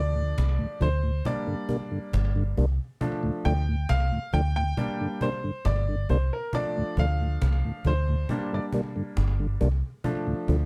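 Meditative and hypnotic, this roots reggae excerpt moves at an unhurried pace in a straight four, swaying between D minor and G minor chords. A bright, woody upright piano carries the lead with brilliant stabs, its solo running through the whole passage. Beneath it, a deep dub fingered electric bass sits up front, dark and round with a foam-muted, direct and amped tone. A mellow tonewheel organ enters at 0.2 seconds as accompaniment, lightly overdriven with chorus vibrato and a slow rotary speaker giving it a dark, rounded body. A woody cajon with faint snares and hard hands plays from a distance in a large room, carrying a slapback echo. The mix itself stays dry, with little reverb, and the passage is cut from a longer piece.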